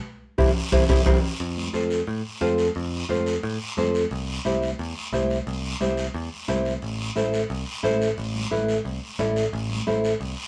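Passionate and fiery, this short cut from a longer cumbia piece moves at a brisk 177 BPM in a straight 4/4. A thumb-plucked nylon-string guitar sits up front with a classical tone, carrying the accompaniment over chords that move from C to F, back to C and then to A minor. Beneath it, a picked electric bass sounds dark, round and punchy, also placed close in the mix. The opening moment is marked by a band accent and a drum fill, with a closely miked bombo played with a soft beater heard only until 1.1 seconds. Throughout, high-tuned congas ring softly in the background as if from a distant, large room, while a raspy guiro adds texture, all within a moderate studio reverb that suggests a band playing live together, tuned slightly low to A4 = 438 Hz.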